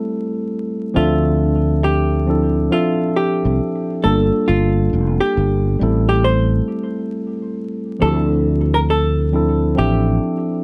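Lo-fi hip hop in D minor at 68 BPM, this short cut from a longer piece sets a reflective, nostalgic mood over a 4/4 groove with a lazy swing on the sixteenths. A mellow tine electric piano carries the accompaniment from the start, sitting up front with a clean, direct tone that is softened by cassette tape character and a low-pass filter. Over it, a dark, hollow-bodied archtop guitar, miked and amplified, picks a clean melody in a narrow band from F4 to C5, also dulled by a low-pass filter and placed a little lower in the mix. At 1.0 seconds a sustaining fretless electric bass enters, growly and punchy with an ensemble chorus, and it stays prominent until 10.2 seconds. The harmony moves through Am7, Dm9, Gm9 and back to Am7 before a new section opens on Dm9 at 8.0 seconds, all within a moderate studio reverb and a layer of vinyl crackle.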